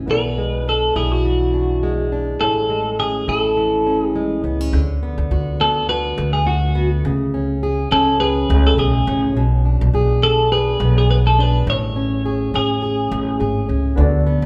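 Heard through a wet, large studio reverb, this is a band playing live in one room, cut from a longer acoustic pop piece in A major with an easy-going, heartfelt mood. The tempo sits at 104 BPM in 4/4 with a light swing on the sixteenths. A fingerpicked, full-bodied jumbo steel-string acoustic guitar sits up front as accompaniment alongside a woody pizzicato upright bass. Over them, a bright, twangy twelve-string electric guitar carries the melody with a clean, compressed, picked tone. A mellow, dark upright piano adds natural-sounding accompaniment in the opening passage, drops out at 4.8 seconds as the second section begins at 4.7 seconds, and returns briefly at 14.0 seconds. The harmony moves through jazzy colours such as Amaj7, D6 and Bm6 before settling back on Amaj7.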